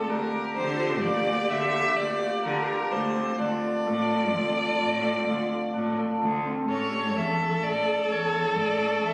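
This contemporary chamber piece moves in an uneven 7/4 at 128 BPM with a straight feel. It sits in D minor, tuned to A4 = 445 Hz, and has a hypnotic, pensive mood. A single bowed violin carries the melody up front with a rich, expressive tone, vibrato and portamento. A close, dark viola shapes a soft-attacked second line, and the cello anchors the bass with its own gentle attack and sliding, vibrato-laden phrasing. Between them the cimbalom spins hammered arpeggios that shimmer and ring, while a bell-like, sweet celesta adds delicate touches in the background around 0.6 and 6.4 seconds. The harmony holds on Gm7/D before turning to A7 at 6.7 seconds. This short excerpt, cut from a longer piece, was captured by phone in a recital hall with lush reverb and compression.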